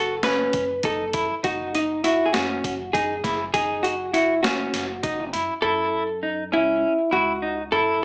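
Progressive instrumental band music in a driving, brooding 7/8, cut from a longer piece, where a dark, compressed hollow-body jazz guitar carries the up-front melody through tape echo, a clean electric guitar picks warm arpeggios shaded by harmonic tremolo, a woody pizzicato upright bass holds the low end, and a gritty sampler-style boom bap kit with a thumpy kick and high-tuned snare plays from 0.2 to 5.5 seconds, the mix sitting in a wet small room with a small-speaker sound.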